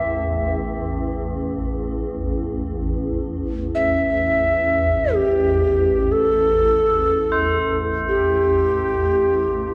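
Spacious and haunting, this free-time world meditation piece in A minor pentatonic, tuned to A4 = 441 Hz, is a 9.7-second excerpt cut from a longer work. An airy, hollow cedar flute in the Native American style carries the melody up front with a tongued chiff and straight tone. Beneath it, a swarming, detuned granular drone sits low with its own built-in reverb, while dark, solemn tubular bells struck with a plastic hammer ring softly. The whole recording is bathed in a cathedral reverb and colored by worn cassette tape with a warbling pitch drift.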